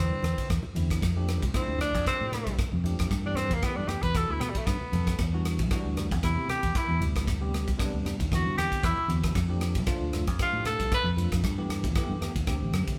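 A breathy tenor saxophone opens this slick, funky slice of electric jazz fusion, joined at once by a bell-like tine electric piano and a dark, round fingered electric bass, with the drums and congas arriving a moment later at 0.2 seconds. The saxophone takes the solo up front, its clear, vintage tone carrying a jazz vibrato over a lightly swung groove in 4/4. Beneath it the electric piano accompanies with a clean, direct sparkle through lush extended chords, while the amped bass holds the low end. The crisp kit sits forward with a punchy kick, ride cymbal and rim clicks, and very quiet, low-tuned congas add a thick-skinned pulse close behind. The band sounds as if it is playing live together in a stone room with a moderate reverb, and after the saxophone drops out at 11.1 seconds the piano, bass, drums and congas carry on until about 13.0 seconds, where this section cuts off mid-piece.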